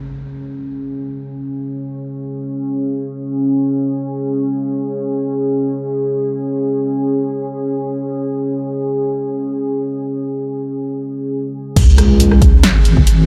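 A deep, dark ambient pad opens this cavernous, brooding deep dubstep fragment, holding sustained chords in free time with a slow-attack sawtooth-and-sine body, sub-octave weight and a chorus shimmer. For the first stretch the pad carries the music alone, moody and up front, as a huge ambient reverb with a 7.6-second tail soaks the mix in a dreamy haze. After a break from 10.0 seconds, the drop lands at 11.8 seconds, bringing in a soft wobble bass with a detuned, triangle-tinged roundness, chorused and compressed close to the listener. An overdriven electronic kick with a deep, layered thump arrives at the same moment alongside a house drum kit of crash, hi-hat, rim click and a punchy snare, its hats, snare and cymbals dulled by low-pass filtering and given a small-room grit. A background electronic impact marks the drop, and the passage cuts off at 13.3 seconds, clearly lifted from a longer track.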